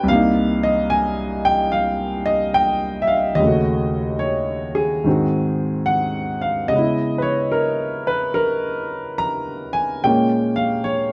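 A loose swing at 72 BPM in 4/4 drifts with rubato, giving this short solo jazz excerpt a playful, unhurried lilt. A lone grand piano carries everything, its smooth, vintage tone sitting up front and ranging from C2 up to Bb5. The harmony moves from Cm7 through Ebm7b5 and Ab7 to Dbm7, settling on Bbm7 at 10.1 seconds. Light reverb surrounds the instrument, and the dark production lends the passage a mellow, late-night glow. Cut from a longer piece, the fragment runs just over 11 seconds and feels like a relaxed, swinging aside.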